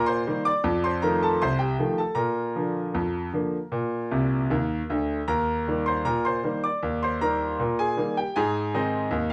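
Playful and lively, this short ragtime piano piece moves at 78 BPM in a straight 2/4, set in Eb major and tuned to A4 = 442 Hz. A single concert grand carries everything alone from 0.0 to 9.3 seconds, its tone brilliant and up front, spanning C2 to D6 with a deep bass beneath a bright treble. The harmony moves from Eb through F7 and Bb, returning to Eb at 5.3 seconds before turning toward Ab near the close. A short piano fill between 4.1 and 5.3 seconds adds a flourish just before that return home. The sound has moderate studio ambience and a soft top end, as if captured live in one room, and the clip is cut from a longer performance.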